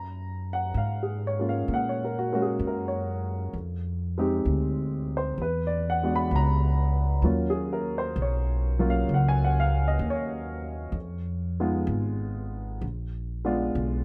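A warm, natural-sounding upright piano, up front and close, accompanies this intimate, melancholic jazz ballad with rich extended chords, moving from Gbmaj9 through Fm9 and E9 to Ebm9 before settling on Fm7b5 and Bb7b9. Beside it, a dark, woody pizzicato upright bass with steel strings sits just as near, and both parts play across the full 14 seconds of this swung 4/4 passage cut from a longer piece. Close, detailed microphones and little reverb give the sound a dry, personal closeness.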